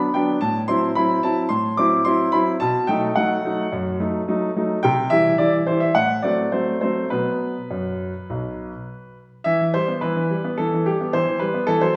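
This classical-period piano sonatina in E minor has an elegant, dramatic mood, moving at roughly 101-111 BPM in 4/4 with a flexible, rubato feel. A solo grand piano carries the whole 12-second passage, ranging from B1 up to D6, with a clear, open tone and long sustain that sits up front. The harmony leans on tension, passing through F#m7b5/A, a rootless B7, C, F#dim/A and a bare B5 before settling on E minor. At 9.5 seconds a new section begins on that E minor chord. A wet recital hall reverb surrounds the performance, giving the sense of hearing from further back in the room. The passage is cut from a longer piece.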